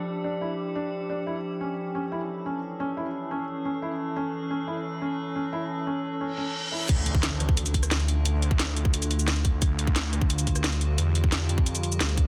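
A metallic, eerie drone of sustained chords and a soft, felt-muted upright piano playing arpeggios through 12-bit grit, delay and sidechain pumping open this tense, aggressive dark technical drum and bass excerpt at 176 BPM in D harmonic minor, moving from Dm to A until a reverse cymbal rises at 6.3 s into an impact and a drop at 6.9 s, where a swirling, thick phased saw bass with overdrive arrives alongside a tight, up-front electronic kick and a layered kit of cracking snare, metallic hats, rim click, cabasa and crash, all set in a lush hall reverb under a dense, heavily limited master.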